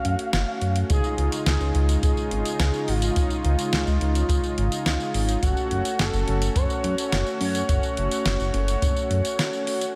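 A dreamy mix soaked in lush hall reverb gives this nostalgic, uplifting synthwave excerpt a hazy glow at 106 BPM in a straight 4/4. A smooth, expressive synth lead carries the melody from the start, its sawtooth tone soft-edged with vibrato, chorus and analog delay. Beneath it, a detuned analog pad holds sustained chords that pump with the sidechain, while a glossy, dark chorused synth bass sits up front with an evolving pulse-width character. A clean 12-bit digital drum machine supplies hi-hat, tambourine and a fat snare in a small room, joined at 0.9 s by a boomy acoustic kick. At that same moment, round, brassy synth stabs with a filter sweep and diffuse ambient delay enter in the background as the harmony moves from Gbm to Dbadd9, returning to Gbm at 5.4 s before a short break from 9.4 s.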